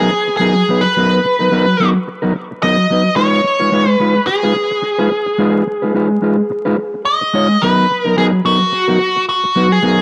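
Funky and cool, this short excerpt of swung 108 BPM funk in G# dorian sets a nasal, overdriven lead guitar, picked through a parked wah with cassette tape and analog delay effects, over a mellow, clean, fingered electric guitar moving from G#m9 to C#9, both dark-toned and up front in a home cassette recording with spring reverb and vinyl crackle.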